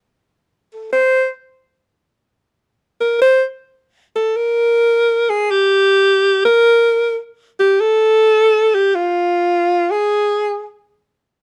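The recording has a dark production with a light reverb around it. A lone alto saxophone enters at 0.7 s and carries this short jazz passage by itself until 10.7 s, its clear, close-miked tone sitting up front. Played in free time, the line moves within a compact span from F4 to C5, coloured by vibrato and a jazz phrasing. The mood is swinging and sophisticated, like a brief unaccompanied statement lifted from a longer piece.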